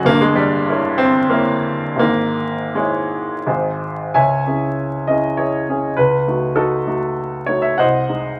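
Brooding and stormy, this short excerpt cut from a longer piece is a romantic character piece for solo piano in 3/4, moving with a free rubato feel at roughly 79-103 BPM. A clear grand piano carries everything alone from 0.0 to 8.4 seconds, ranging from a deep F#1 up to G#5, its tone present and up front. The harmony opens on a diminished seventh chord, settles through C# minor over G# and a G# chord, then begins a new section at 4.1 seconds on C# minor, darkening through a half-diminished chord over C# before landing on G#7 over B# near the close. The tuning sits slightly below standard pitch, at A4 = 439 Hz. A moderate studio reverb gives the piano a modest sense of room, while a layer of vinyl crackle lends the recording a dusty, aged surface.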